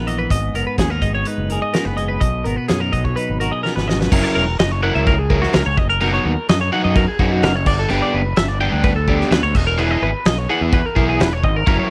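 A warm, clean electric guitar and a bright, twangy twelve-string playing up-front arpeggios open this wistful, playful math rock and midwest emo excerpt over a growling, overdriven fingered bass and a loose indie drum kit with dark cymbals, a fat snare and a punchy kick in a small, pumping room; after a drum fill, the clean guitar stops at 4.1 seconds and a double-tracked, compressed overdriven guitar riff takes its place, with little reverb keeping the sound dry and close as the chords move from G#m7 through Gmaj9 to Emaj7.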